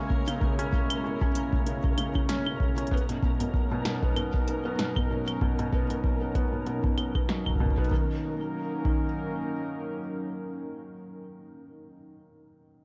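Melancholic and cerebral, this IDM fragment moves at 96 BPM in 4/4 with a gentle 16th-note swing, rooted in Eb phrygian and cut from a longer piece. A warbling, tape-like pad built from detuned sawtooth and triangle tones holds slow-attack sustained chords through chorus and its own reverb, carrying a nostalgic lo-fi haze from Dbm7 to Bmaj9. Up front, a felt-muted upright piano plays soft, intimate arpeggios with audible action noise, rounded by a low-pass filter and trailed by delay, and it lasts longest, to 12.8 s. In the background, a flickering granular texture adds a grainy shimmer until 7.9 s. A deep, overdriven electronic kick sits forward in the mix, joined by an analog drum machine with a punchy snare, metallic hats and claves, all overdriven, their snare, hats and percussion darkened by low-pass filtering and echoed with delay. At 7.9 s the harmony shifts to Ebm7 as the piece moves into a new section, and the kick stops at 9.1 s, leaving the pad and piano in a light digital ambience.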